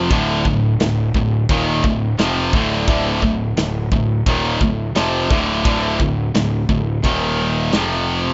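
A straight 4/4 pulse at 87 BPM drives this dark, epic heavy metal excerpt in D phrygian, where a modern acoustic drum kit with a tight kick, medium-tuned snare and ride cymbal plays from 0.1 to 7.9 seconds under two picked electric guitars riffing low, one overdriven and the other a high-gain distorted part sitting up front, both bright. A fuzz-laden electric bass, punchy and overdriven, holds the bottom while the harmony rests on D minor before moving to Eb5 at 7.0 seconds and F5 at 7.7 seconds. The sound is a rough home demo in a small room, with a dull top end.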